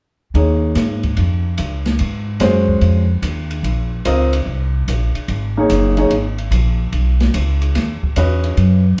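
Heard from further back in a wet studio reverb, this searching, hypnotic modal jazz fragment in Eb dorian swings at 146 BPM, with a warm, short-sustain baby grand piano comping up front over an Eb9sus4 chord that shifts to Bsus4 at 6.9 seconds, while a woody pizzicato upright bass on steel strings anchors the low end and a quieter, smooth acoustic drum kit adds dark cymbals on ride and hi-hat, a medium-tuned snare and a boomy kick.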